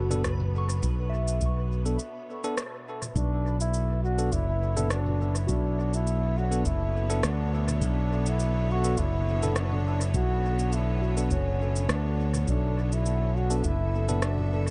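A 103 BPM groove in 4/4 with a light sixteenth-note swing anchors this meditative, hazy ambient dub excerpt in B minor, built on a growly, punchy fingered electric bass up front, a deep analog kick and a tape-warmed electronic kit of rim click, shaker and toms soaked in dub echo. Lush bowed strings hold sustained chords beneath soft FM bell arpeggios treated with chorus and phaser, while a barky, bell-like tine electric piano adds echoing stabs and a reversed, detuned granular texture drifts in the background at the start and close. After a break from 2.0 s with a band accent at 2.6 s, a distant, roomy trombone enters at 3.2 s with a mellow solo melody trailing dub echoes through an echo-heavy mix.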